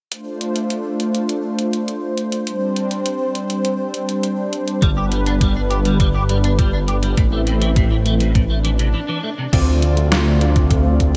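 Driving and nostalgic, this synthwave passage moves at 102 BPM in a straight 4/4, set in D dorian and cut from a longer piece. A brassy analog pad carries sustained chords from the start, bold and airy with chorus and sidechain pumping, while a detuned 8-bit digital drum machine supplies crash cymbal, hi-hat and a medium-tuned snare soaked in gated reverb. At 4.8 seconds a thick, detuned saw bass arrives up front with chorus, joined by a thumpy electronic kick drum and a clean, picked electric guitar riff that is compressed and shaped by ensemble chorus, a low-pass filter and digital delay. An electronic swell leads into a short break just before 9.5 seconds, when a glossy, full-bodied chorused polysynth enters with stabs treated with delay as the chords return to Dm7. The bright 1980s-style digital production sits in a lush hall reverb, giving the whole passage a retro sheen.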